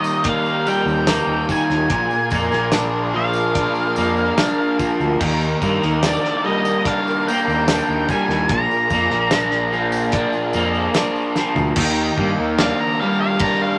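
A straight 4/4 pulse at 73 BPM sets a hypnotic, trippy groove in this psychedelic rock passage, cut from a longer piece and moving through Eb, Bb7 and Ebmaj7. A damped 70s drum kit sits up front, acoustic and dry, with a tight kick, a medium-tuned snare, dark cymbals and a rolled-off top, while a jingly, bright tambourine stays close in the background. A crunchy, double-tracked overdriven guitar plays the picked riff with a phaser, and a round, punchy fuzz bass, fingered and overdriven, enters at 0.9 seconds. Above them, an octave-fuzz lead guitar carries the melody with a dark, distorted edge, and a bowed string section holds sustained chords in the background, clear and biting with vibrato and a smooth top. After a drum fill, the lead guitar takes a short solo at 11.8 seconds over an Ebmaj7 chord, all within a moderate studio reverb.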